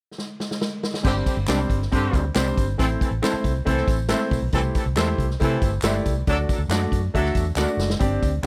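A straight 4/4 groove at 138 BPM drives this danceable, uplifting 1960s-style soul excerpt: a big-room drum kit with a punchy kick and crash, hi-hat and snare opens with a fill at 0.2 s, and bass and piano enter at 1.0 s over Gsus4, Am, C6 and D. A dark, round, foam-muted electric bass and an up-front concert grand piano with deep lows carry the groove, while a clear horn section with loose vibrato plays a second line. Guitar stabs through a small old amp sound slightly broken-up with ensemble chorus, close, dry tambourine and group handclaps sit low in the mix, and another drum fill arrives at 7.6 s under light reverb.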